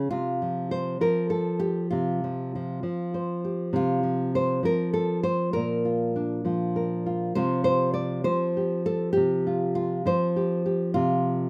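This folk excerpt features a single nylon-string guitar, fingerpicked in a classical manner with a peaceful, nostalgic mood. Its tone is dark and full-bodied, sitting up front in the mix and ranging from Bb2 up to D5. The gentle 6/8 pulse feels straight and unhurried as the harmony moves from Csus4 to F5/C, then to Bb, and back to Csus4 at 7.3 seconds before settling on F5/C near 11.0 seconds. A light reverb surrounds the instrument, and the rough home-demo sound gives the brief passage an intimate, unpolished character.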